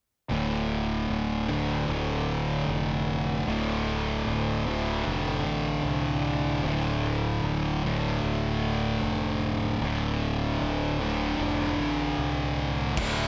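Stoner and doom metal at a slow 76 BPM in D minor, this sludgy, brooding passage cut from a longer piece sits on a single D minor chord as two thick fuzz guitars, one warm and one dark, grind out a picked riff over a growly, punchy fingered bass with overdrive, all up front in a studio reverb. At 13.0 s a bright, double-tracked high-gain guitar joins the riff just as a big acoustic drum kit lands a boomy kick and a bright crash cymbal.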